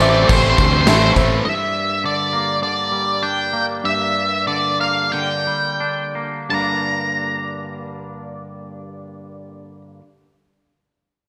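A straight 4/4 pulse at 82-104 BPM, slowing from 1.4 to 6.5 seconds, carries this melancholic, cinematic post-rock excerpt in G dorian, where a dark, fuzzy octave-fuzz lead guitar sings up front over a vintage brass ensemble's sustained chords, while a felt-muted upright piano with audible action noise, two bright overdriven electric guitar riffs, a growling fingered bass and a loose, roomy indie drum kit play only until about 1.4 seconds, when the chords move from Am7 to Gm and a clean, twangy electric guitar with subtle chorus takes over the arpeggios, all set in a lush hall reverb for a big arena sound.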